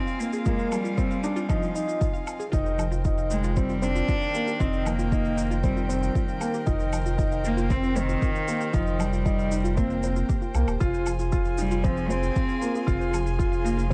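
An up-front, floating cello carries the melody with tape echo through this intimate, moving piano and strings electronica excerpt at 116 BPM in 4/4, over sul tasto string quartet chords and a lo-fi, warbling pluck arpeggio with chorus, both pumping with the sidechain, while a shaker and woodblock enter at 0.1 seconds, a mellow baby grand riff, a round analog bass and a deep, layered electronic kick join at 0.5 seconds, and a short build-up gives way to the drop at 2.5 seconds, the harmony moving from Fm to Eb6/F and back in a dark, lightly reverberant mix.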